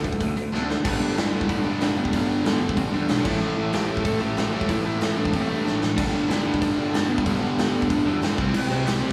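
Rowdy and upbeat, this short cut of punk rock charges along at 187 BPM in a straight 4/4 in G major, moving from a D5 pickup through G, A5 and G before landing on C5. Up front, a big acoustic rock drum kit drives the band with a punchy kick, a medium-tuned snare, hi-hat and crash, and drum fills at 0.5 and 5.7 seconds. Beneath it, a growly fuzz-laden picked bass, direct and amped with overdrive, anchors the low end. Three riff guitars sit in the background: a bright overdriven distorted electric guitar, a raw picked garage guitar with overdrive, and, from 0.8 seconds, a double-tracked, compressed fuzz guitar with a warm distorted tone. Also in the background, a lightly driven, slightly broken-up lead guitar carries the picked, compressed melody. The band sounds like it is playing live together in a small room, with a touch of light reverb adding natural ambience.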